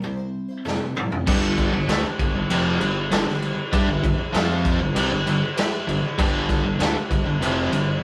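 A cranked stack guitar drives this confident, swaggering classic rock excerpt from the first moment, its bright, double-tracked riff carrying overdrive and a harmonic tremolo. It opens in a break over a C chord, joined by a shimmering, octave-doubled twelve-string acoustic guitar with audible finger squeak and a raw garage drum kit that enters at 0.7 seconds with a fill. At 1.3 seconds the chord moves to G, the acoustic guitar drops out, and the band settles into its main section. There a crunchy, phased second guitar plays a riff in the background, a round, dark fuzz bass growls underneath, and a brilliant, woody upright piano adds accompaniment from the back. The drums sit up front with a punchy kick, medium-tuned snare, toms and crash, sounding gritty and saturated with a rolled-off top. The whole band plays live in one room, bathed in a wet studio reverb.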